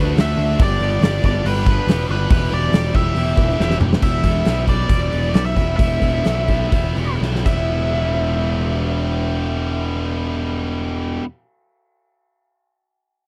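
A fuzzy, overdriven electric bass sits up front and punchy in the low end, giving this short, gritty classic rock clip its brooding weight. Over it, a nasal lead guitar with a parked wah carries the melody in a warm, overdriven tone with a slapback echo, while a tight, double-tracked distorted rhythm guitar picks out a bright riff underneath. A huge acoustic arena kit with a fat snare, punchy kick, glittering cymbals and a pumping hall sound drives the straight four-four feel, and fills mark the ends of phrases at 3.6 and 7.2 seconds. The middle passage slows down, and the drums drop out at 7.6 seconds, leaving the guitars and bass to close on their own. The harmony moves from D6 through G to E minor, and the overall sound stays fairly dry.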